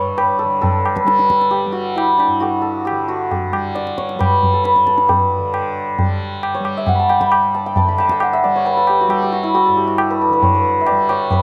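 Devotional and serene, this short Hindustani classical excerpt is set in raga Yaman on G and moves at 135 BPM in a straight 4/4. The santur carries the melody from the start, its hammered strings shimmering and ringing up front across a range from D4 to B5. Beneath it, a tanpura sustains a softly plucked, buzzing drone between G2 and G3, sitting well back in the balance. The tabla enters at 0.2 seconds, low-tuned with a short ring and a close, dry sound. Recorded outdoors with little reverb and free of any room sound, the performance feels intimate and direct, and it is cut from a longer piece.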